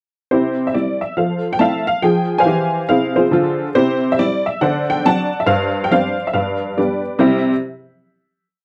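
Playful and exuberant, this short, complete stride-piano jazz piece in C major swings along at 139 BPM in 4/4, its eighth notes lilting with a buoyant triplet-leaning feel. A lone honky-tonk upright piano carries everything from 0.3 seconds, playing the tune over its own chords and a stride bass across a range from G2 to A5. Its detuned, jangly voice has a woody, vintage character and a short sustain, sitting up front in a close, detailed sound with a touch of reverb. The single pass through the melody moves from C through Fmaj7 and a wistful Fm, then on to D7, Gsus4 and G7 before resolving. At 7.2 seconds the piece lands on a final C chord that rings out to the close.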